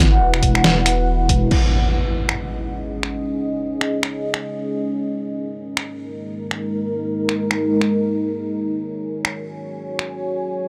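Deep dubstep at 138 BPM in a half-time, swung feel, brooding and cavernous in C# dorian, where a detuned, sawtooth-edged ambient pad with chorus and built-in reverb sustains dark chords over a wobbling square-and-sine bass that drops out at 1.5 s, a punchy layered electronic kick, a gritty, pitched-down sampler-style trip hop kit of crash, finger snaps, hi-hat and snare, and an up-front electronic impact at 1.5 s, all set in a dry recording with transformer saturation.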